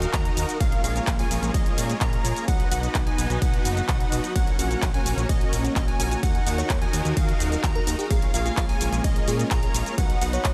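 A dreamy mix soaked in church reverb carries this triumphant, anthemic festival progressive house excerpt at 128 BPM in straight 4/4, tuned to A4 = 436 Hz, as a chord cycle of D#m, A#m7, B and F#/A# repeats. A punchy, up-front electronic kick and a layered big-room kit of handclaps, hi-hat, ride cymbal and shaker drive a fat, tube-saturated analog bass, a huge detuned supersaw riff with analog chorus and delay, and a catchy square-wave unison lead playing arpeggios through cassette tape and delay, while a clear studio string section holds bowed chords in the background, with sidechain pumping on strings, lead, supersaw and bass. A barely audible sub drop marks the opening impact until 0.6 seconds, and at 6.6 seconds a sparkling, bell-like FM electric piano joins in the background with a chorused melody.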